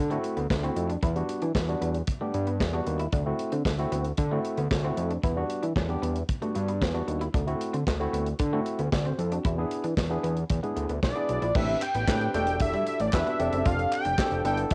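A fat, detuned analog bass with a nasal, saturated sawtooth edge sits up front in this late-night, danceable stretch of early-eighties boogie funk, cut from a longer piece, at 114 BPM in E minor. Beside it, a barky tine electric piano runs lightly overdriven through a combo amp, while an acoustic studio drum kit keeps a straight 4/4 with a tight kick, medium-tuned snare, handclaps, hi-hat and bright crash cymbal. Tucked in the background, a twangy, fingered electric guitar at the edge of break-up plays a riff bathed in lush chorus. The harmony moves between D7 and Em7, touching E7, before shifting at 11.6 seconds to Am11, Em11 and F69. A mellow, sub-octave analog lead with vibrato and a filter sweep enters at 11.0 seconds, and a crisp, dry group handclap joins at 11.8 seconds. Cassette tape colouring on most parts and a home-recorded studio ambience give the groove its lo-fi grain.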